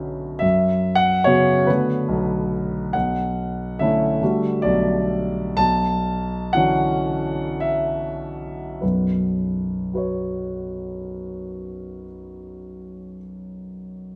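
In a rubato 3/4 that drifts between 46 and 73 BPM and slows from 1.7 to 8.8 seconds, this hazy, nocturnal impressionist classical piece in B minor, cut from a longer work, presents a solo concert grand piano, up front with deep bass and long sustain, moving through colors such as Bm11 and Gmaj9 before settling on Bsus2 at 8.8 seconds, all framed by a moderate scoring-stage reverb and close, detailed microphones.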